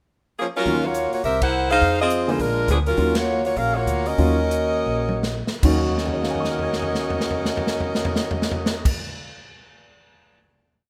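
Dramatic and brassy, this short, complete big band swing piece opens with a pickup bar in which a clear, tight saxophone section begins a motif-based melody in four-part block voicing with light vibrato. It is soon backed by syncopated drop2 comping on woody upright piano, a pizzicato two-feel upright bass and a polished, airy drum kit keeping time on the hi-hat with a punchy kick. The band hits accents, slows from 3.0 seconds and settles on a final chord at 5.6 seconds, with drum fills leading into and over the held chord and the kit sounding until 10.4 seconds in a moderate large studio reverb.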